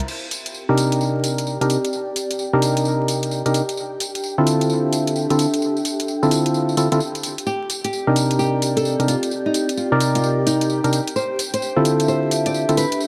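A moody, skippy two-step UK garage passage at 130 BPM opens with silky string-machine chords, phased and chorused in the background under a filter sweep, alongside an overdriven, layered electronic drum kit of crash, hi-hat and tambourine swung on the 16ths. A warbling, nostalgic lo-fi pad sits low in the mix, while dark, hollow organ stabs with tape echo cut up front over chords alternating between Cm9 and Dm9. At 7.5 s a small, fingerpicked nylon-string guitar melody enters with its own tape echo, all wrapped in a lush hall reverb and vinyl crackle.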